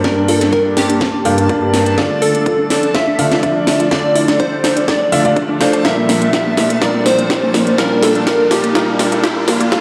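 A felt-muted upright piano sits up front with soft, intimate stabs, its tone mellow and filtered, with sidechain pumping and digital delay, in this driving, bittersweet progressive house build-up at 124 BPM, cut from a longer piece. A punchy, catchy square-wave unison lead carries the melody with vibrato and a moving notch, joined by a very quiet, dark, round pluck playing a second line in the same range, while a tight sawtooth arpeggio synth runs in the background with chorus, delay and a filter sweep. Beneath them an evolving wavetable pad morphs through sustained chords with ensemble chorus, phaser and its own filter sweep, and a reversed, dreamy granular texture hovers faintly above. The house kit is up front with a cracking snare and metallic hats through a drum fill, the tape-warm electronic kick sits further back, and a faint riser enters at 1.2 seconds. The harmony moves from G minor to D minor and then to Bb6 at 5.8 seconds, all heard in a moderate recital hall reverb and played back on a big sound system in a bare room.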